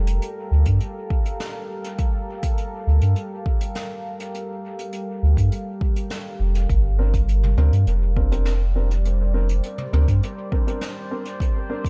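Spacious and hazy, this short excerpt cut from a longer ambient dub piece moves at 102 BPM in a straight 4/4, sitting in G minor. A deep, moody pad holds sustained chords throughout, its slow-attack sawtooth and sine layers softened by chorus and its own reverb as the harmony shifts from Gm9 to Bbadd9 at 6.7 seconds. Underneath, a round, soft sub bass with a fast attack sits up front until 10.2 seconds, joined by a layered electronic kick with a deep, produced tone. A distant jazz kit played with brushes adds hi-hat, a medium-tuned snare and toms, its rolled-off top trailing dub echo. From 7.0 seconds a woody upright piano drops in short, dark stabs coloured by vintage 12-bit sampler grit and its own dub echo, all set within a small room ambience.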